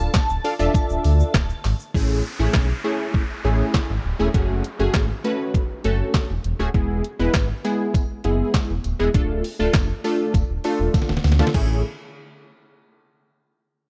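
A shimmering FM bell with ensemble chorus, phaser and tape echo rings out briefly at the start over a punchy, detuned sawtooth polysynth comp with chorus and a moving filter, and a deep sine sub bass doubled at the octave, both pumping with sidechain, in this carefree, summery dance-pop excerpt cut from a longer piece. An overdriven, sampler-style 8-bit drum machine sits up front with a thumpy kick, fat snare, handclaps, hi-hat, shaker and crash, while a very quiet, jingly acoustic tambourine appears early and returns from 7.3 s. An electronic downlifter sweeps through the middle, a drum fill arrives at 10.9 s, and the whole track carries the worn, warbling pitch drift of old cassette tape in a digital ambience.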